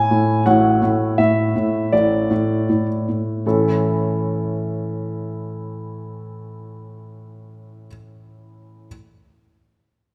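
In a straight, even four-beat pulse, this classical-period sonatina for solo grand piano unfolds with a playful, graceful charm, easing into a slowdown over its opening phrase before a new idea begins at 3.5 seconds on an A chord. The piano sounds clear, intimate and up front, spanning low bass to bright upper notes, with the natural mechanical noise of its action audible beneath the tone. A wet recital-hall reverb with a 1.8-second decay surrounds this short fragment of a longer piece.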